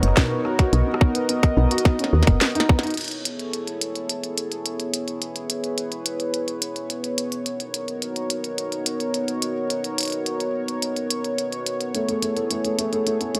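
A woody, round FM bass underpins this wistful, playful IDM piece at 107 BPM, sounding through its first 2.4 seconds alongside a tight, tape-warm electronic kick, while a glitchy kit of tiny snare, clicky hats, rim click and crash runs throughout and closes the opening with a drum fill. A smooth, dark analog pad with chorus holds sustained chords in A lydian, moving between Bmaj9 and Amaj9, and a felt-muted upright piano with audible action noise and a boxy, intimate tone plays arpeggios through analog delay, dropping out early and returning at 11.9 seconds. Light reverb and a digital ambience frame a dry, gritty hardware sound in this section cut from a longer piece.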